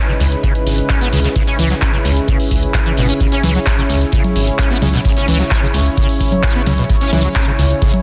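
A squelchy, resonant sawtooth acid bass drives this raw acid house excerpt, its bright, fast-attack riff decaying under a filter sweep and carrying ensemble chorus, digital delay and sidechain pumping. Beneath it, a round analog bass holds the low end with a dark, evolving tone touched by ring modulation, pumping against a deep, tape-toned electronic kick that enters at 0.4 seconds. A punchy analog drum machine supplies dry congas, handclaps and hi-hat, while a polished acoustic kit adds airy hi-hat and a medium-tuned snare with soft clipping, sitting in the background. A smooth, detuned analog pad sustains a single C#m7 chord with slow attack and chorus, joined by a moody, warbling ambient pad with a sub octave and built-in reverb. The whole groove stays in straight 4/4 and feels driving and dense, with a heavily limited, modern master and little room sound.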